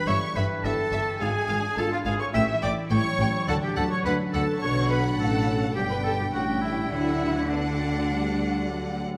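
In a straight 4/4 pulse, this playful, mischievous cinematic fragment sets a rich, expressive chamber violin section on the melody above a clear, distant studio violin section and a roomy solo oboe carrying a second line, lush symphonic violas with portamento in the accompaniment, dark, tight French horns holding sustained chords in the background, ringing fingerpicked harp arpeggios, and a bass of focused studio cellos and intense chamber double basses, the whole set in a wet concert-hall reverb as the harmony moves from Em/G through A7 to D.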